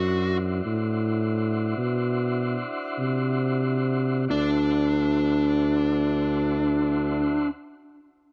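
A dark, smooth, overdriven electric guitar picks a laid-back melody up front in this rollicking slow-blues excerpt in 12/8, over a soft-attack, jazz-style tuba bass and clean tonewheel organ chords held on a D9 through a slow rotary speaker and plate reverb, with the pace slowing over the first 4.3 seconds of a lightly reverberant, warm-toned mix.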